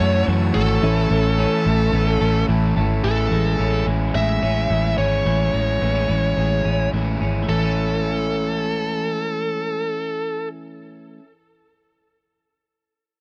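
Youthful and breezy, this brief indie pop excerpt at 108 BPM in A major pairs a bluesy, distorted lead guitar melody with crunchy overdriven rhythm guitar, twangy spring-reverbed twelve-string arpeggios and a dark, round, foam-muted electric bass up front, while a woody, slightly detuned upright piano and bowed chamber strings with vibrato color only the first 3 seconds, all captured in a dry, close 1970s-style studio sound over F#m7 and Amaj7 chords resolving to A at 7.5 seconds.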